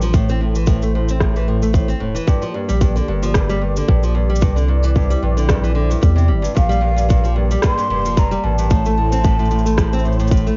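Folktronica at 112 BPM in Bb lydian with a gently swung sixteenth feel, hopeful and warm, cut from a longer piece and heard through a dull, home-made cassette sound. A tight, up-front electronic kick drum and a round sine sub bass anchor the groove while tape-tinged electronic cabasa and rim click sit further back. A bright, small fingerpicked nylon-string guitar plays arpeggios through analog delay, and a detuned sawtooth analog pad holds smooth sustained chords with chorus and plate reverb; at 6.6 s a breathy, hollow concert flute enters with a close-miked, straight-tone melody over chords moving from Bb6 back to Am.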